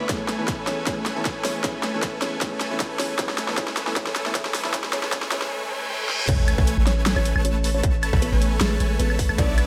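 Lush, detuned supersaw chords pump against the sidechain from the start of this euphoric, bright future bass excerpt at 155 BPM in a half-time 4/4 feel in A major. A woody kalimba melody with delay and a soft, felt-muted upright piano sit in the background, with the piano's audible action noise heard until 5.4 seconds. A distorted electronic kick and a tape-warm dubstep kit with a huge snare and bright hats drive a build-up with a filter sweep, drum fill, very quiet riser and reverse cymbal, until the drop lands at 6.3 seconds on an Amaj9 chord with a deep, sine-like 808 bass up front and a light digital ambience around the mix.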